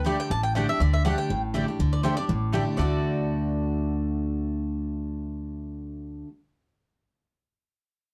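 A brisk 242 BPM in 4/4 with a light swing on the eighth notes drives this lively, joyful bluegrass excerpt in D major, cut from a longer piece. A picked steel-string acoustic guitar, bright and full-bodied with fresh strings and a jumbo body, sits up front with the accompaniment, while a woody, thumpy upright bass played pizzicato on steel strings anchors the low end, also up front. A warm, round mandolin carries the melody between C5 and A5, and a second, mellower mandolin adds stabs across a broader range from A3 to A5. The harmony rests on a suspended D chord before resolving to plain D at 2.8 seconds, where a new section begins. Light reverb and a dark, warm production shape the short passage.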